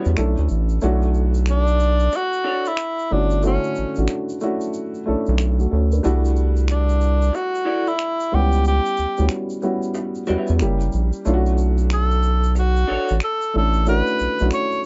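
R&B with a neo-soul lean, this soulful, introspective excerpt moves at 92 BPM in 4/4 with a swung sixteenth-note feel, set in B minor. A breathy tenor saxophone carries the melody up front, its whispered tone, soft attack and light vibrato touched by a slapback echo. A dark upright piano supplies woody, intimate accompaniment with audible action noise and short sustain, while a round analog bass sits prominently underneath with a deep, evolving tone. An electric guitar through a small old amp adds a slightly broken-up, lo-fi second line bathed in lush chorus and slapback echo, sounding at the start and again from 7.3 to 13.1 seconds. Egg shaker and finger snaps keep quiet time in a small-room setting, and the harmony drifts from Bm9 through C69 and C#m7b5 to F#7b9 before settling back on Bm9 in a dry, dark, warm production.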